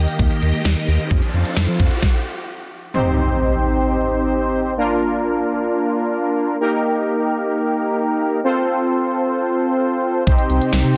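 Driving and cool, this synth-pop excerpt moves at 131 BPM in a straight 4/4, centred on C dorian. It opens with a full band: a swirling, vintage string machine holding sustained chords through ensemble chorus and phaser, a round, deep analog bass, and a layered electronic drum kit with a knocking kick, fat snare and crisp hats sitting up front. The band cuts out at 2.0 seconds, and an electronic riser that began at 0.6 seconds climbs into a stop before an impact lands at 2.9 seconds. From there a brassy, nasal analog synth brass carries the accompaniment as the impact rings out, its detuned sawtooth tone shaped by a filter sweep and chorus over a Cm, Bb, Eb, F progression. Bass, drums and strings return briefly near the close, between about 10.3 and 10.5 seconds, all set in light digital ambience within a dense, heavily limited modern master.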